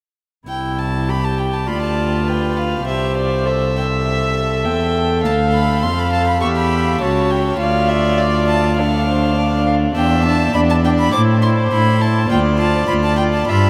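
In a rubato 4/4 at 102 BPM, this cheerful, lively excerpt from a quick classical-period movement for string quartet opens at 0.5 s. The first violin carries the melody with a nasal, airy-bowed gut-string tone heard close, over a distant, reedy viola accompaniment and a rich, up-front cello bass. A second violin joins at 1.7 s with a lightly vibrato second line in period style as the harmony moves from C through Dm and Em7 to Am before settling back on Dm, the quartet bathed in a huge ambient reverb that places it in a vast, echoing space.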